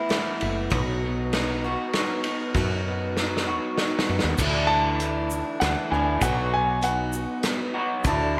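A big arena-sized sound with a moderate concert-hall reverb frames this short, nostalgic excerpt of folk rock and heartland rock, moving at 98 BPM in a straight 3/4 over chords of Asus2, B and Dsus2. A bright picked parlour acoustic guitar and a slightly broken-up, lo-fi electric guitar riff, thickened by lush chorus and slapback echo, sit over a soft, flute-like tonewheel organ with fast rotary vibrato. Underneath them are a roomy, distant drum kit with dark cymbals and a punchy kick and a growly, round fretless bass. After a drum fill at 3.2 seconds, a grainy tube shaker joins, and at 4.7 seconds a dark, intimate baby grand piano with audible action noise takes up a high melody.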